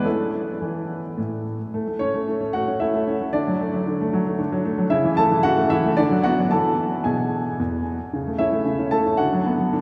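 Graceful and cheerful, this short cut from a longer classical-period piano sonatina in A major moves at 112 BPM in a straight 3/4, with a solo concert grand that sounds smooth, vintage and up front, with a deep bass, moving through A, D, A/C#, Bm/D and E chords from its opening at 0.1 seconds to the close at 9.8 seconds, all washed in a wet cathedral reverb with a long 4.7-second decay.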